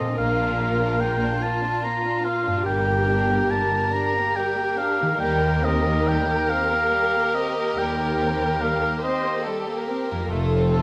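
Classical slow romantic movement for symphony orchestra at 47 BPM in a rubato 12/8, lyrical and tender, where a smooth, rich violin section carries the melody over a focused second violin line and an up-front solo oboe with light vibrato, while an expressive viola section accompanies, a mellow, ringing harp spins arpeggios in the background, and distant cellos and soft-attack double basses enter at 0.2 s beneath a progression from Bb through Gm and Cm7/Eb to F, all set in a moderate recital hall reverb in this brief cut from a longer piece.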